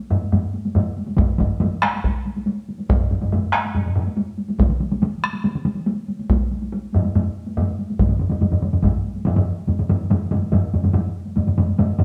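Solo taiko drums struck with heavy sticks ring out, one layer compressed, saturated and up front, another close and dry, over a taiko ensemble that sounds vintage and band-limited in one part and small-roomed in the other, driving a powerful straight 4/4 at 141 BPM in this cut from a longer Japanese traditional piece, played live together in a wet stone room, with one solo drum part dropping out at 8.9 seconds before a new section arrives at 9.7 seconds.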